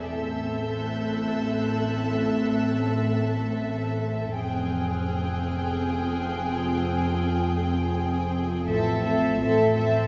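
An eerie, ominous stretch of suspense film score opens with the full string ensemble and an organ-like drone sounding together, bowed sul tasto at a slow 83 BPM in 3/4 and A minor. A clear, floating violin section carries the melody between E5 and G5, while a second violin section, smooth-topped and up front, holds a second line from Ab4 to A4. Beneath them, an intimate viola section with light vibrato sustains C4, and a dark cello section and a pure double bass section sit in the background on the bass between F2 and A2 and F1 and A1. The calm, warbling drone is vintage and detuned, with ensemble chorus and built-in reverb. A distant, woody violin section adds a faint, lush high texture from E6 to G6 until 8.3 s. The harmony moves from Am to Fmadd9 at 4.3 s and back to Am at 8.7 s, all heard from further back in a wet scoring stage with a dim, rounded top end in this fragment cut from a longer piece.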